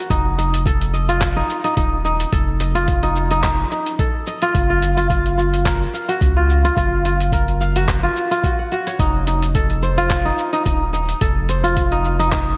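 Organic downtempo at 108 BPM in F phrygian dominant, this hypnotic, meditative passage from a longer piece swings lightly on the 16ths as a crisp, ringing, fingerpicked kora plays arpeggios up front over chords moving from F7 to Gbmaj7 at 4.5 seconds and back to F7 at 9.0 seconds. Beneath it, a deep, round sine sub bass pumps with sidechain, and the kora's analog delay trails its notes. A gritty, tape-warm sampler-style kit of cabasa, handclaps and hi-hat sits low alongside a thumpy electronic kick, all soaked in a dreamy, lush hall reverb.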